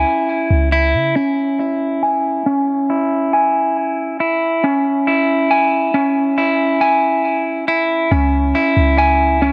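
The rhythm sits at 138 BPM in 4/4 with a half-time feel, giving this brooding, melancholic trap-style hip hop excerpt in C# minor an unhurried, heavy pulse. An electric guitar at the edge of break-up carries the piece from start to finish with fingered arpeggios between C#4 and G#5, its tone twangy, slightly broken-up and compressed, placed up front and shaded by a low-pass filter and delay. A clean 808-style bass, deep and boomy with a sine-like, fast-attack body that decays into darkness, sounds only at the opening until 1.1 seconds and returns at 8.1 seconds, reaching from C#2 to C#3. Between 1.2 and 8.1 seconds the guitar plays alone under a filter sweep, which shifts its colour through the middle stretch. Light reverb and a digital ambience frame the whole piece, which rests on a C# minor chord from the outset.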